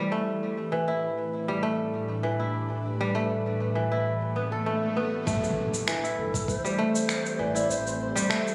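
Organic downtempo excerpt with a hypnotic mood, in which a crisp, ringing fingerpicked kora plays delayed arpeggios up front over an ethereal, detuned pad with chorus, phaser and sidechain pumping; an electronic swell rises from 4.3 s into an impact as a round, dark analog bass, a soft electronic kick and gritty, compressed cabasa and finger snaps arrive at 5.3 s, and a breathy, reedy low ney with vibrato enters at 6.2 s, sounding distant within a lush hall reverb and a phone-in-the-room character.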